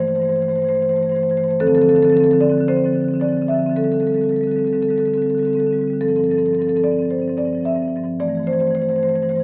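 Light reverb and a small-speaker sound frame this brief excerpt of a contemporary classical piece for solo marimba, reflective and hypnotic in mood, moving at 111 BPM in 4/4 with a rubato feel. Played with soft mallets across a range from G2 to E5, the marimba is mellow, round and full, close-miked and dry so it sits up front. Over 9.4 seconds the harmony drifts from C6/G through Dm7, D7sus4 and G9sus4 before settling back on C6/G at 8.2 seconds.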